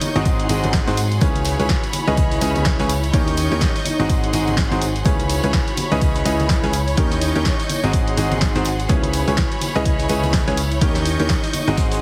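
A bright, up-front baby grand piano riff with audible action noise and delay leads this energetic, soulful piano house clip, entering at 0.2 s alongside a round, tube-saturated FM bass, with a punchy electronic kick following at 0.3 s, over a punchy analog drum machine, very quiet brushed kit, distant congas and tambourine, lush vibrato violin chords and an ethereal chorused pad, with the piano, bass, violins and pad pumping to the sidechain through a heavily compressed radio sound as the chords cycle through G#7, C#m7 and D#7.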